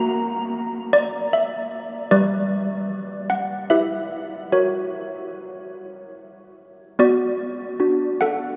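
Malleted handbells carry this brief, wintry classical tune alone, their bell-like tone struck with medium clappers and damped into short, airy notes that sit up front. The piece moves at a solemn 75 BPM in 3/4 with a straight feel, in B minor, and the bells range from G3 up to A#5. A long, wet cathedral reverb with a six-second decay surrounds them and places the listener further back in the room, so each short strike blooms into a lingering halo. The harmony opens on F# over A#, passes through G, E minor and F#, and a new section arrives at 7.0 seconds to settle on B minor. Cut from a longer piece, it ends at 8.6 seconds.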